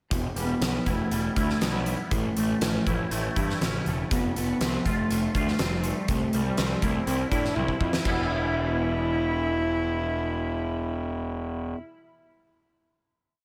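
A dark, airy cello leads this short, angsty alternative rock piece, bowed sul tasto by a single player with light vibrato and a soft attack. It carries hook-like melodic phrases that sound intimate and close, touched by slapback echo. Beneath it, a twangy, scooped electric guitar picks clean arpeggios through ensemble chorus, slapback echo and digital delay. A growly fuzz bass drives eighth notes up front, and a huge arena drum kit with a fat snare and punchy kick pounds out a big rock groove. The chords move from Em through A, F and C. A drum fill at 7.6 seconds leads to a final Em chord at 8.1 seconds, where the drums stop and the cello, guitar and bass ring out in a lush hall reverb for a cathartic close.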